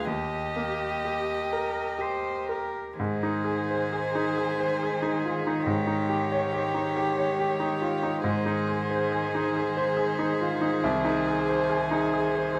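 This classical slow movement for piano quartet, cut from a longer piece, unfolds tenderly in 6/8 at a rubato pace of about 40-47 dotted-quarter beats per minute, settled in Ab major. One violin carries the melody with a warm, expressive voice, its bowed line marked by vibrato, soft attacks and portamento. A second violin and a cello shape supporting lines: the violin smooth and even with a rich vibrato, the cello rich and focused, rising from its low register up into the treble. A bright, brilliant grand piano sits up front and natural in the sound, providing the accompaniment across a broad span and standing as the most prominent voice of the four. The harmony eases from Eb toward Ab, touches an Eb7 over an Ab bass around 5.7 seconds, and rests on Ab with C in the bass near 10.8 seconds. Close, detailed microphones capture the players inside a moderate recital hall bloom, lending intimacy to the tender, warm mood.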